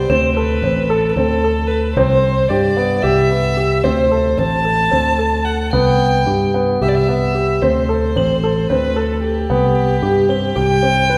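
A dark violin, a mellow grand piano, a picked electric bass and soft crotales all sound together from the opening moment of this shimmering, hopeful piece of contemporary chamber music in 7/8, moving at 223 BPM in eighths with a straight feel in D mixolydian. The solo violin carries the melody up front, intimate and close, with light vibrato, a soft attack and an airy bow. Beneath it the piano spins arpeggios with long sustain, while the growly, punchy electric bass sits directly in the foreground with an amped, warm tone. High, bell-like crotales struck with hard rubber mallets ring in the background, pausing at 2.2 seconds and returning at 5.7 seconds. The harmony alternates between D and C chords, D7, Cmaj9 and Cmaj7 among them, and the whole passage is bathed in the wet reverb of a church or concert hall, taken from a longer work.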